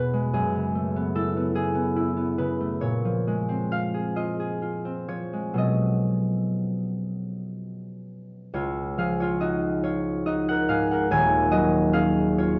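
Bathed in the wet reverb of a recital hall, this graceful, peaceful classical fragment, cut from a longer piece, features a solo concert harp that sits up front with a warm, ringing, thumb-plucked tone, drifting in a rubato 6/8 across a span from deep Eb1 to Ab5 through lush chords such as Gbm11 and Bbm9 before settling onto Dbadd9 at 8.5 seconds for a new section that closes on Ebm11.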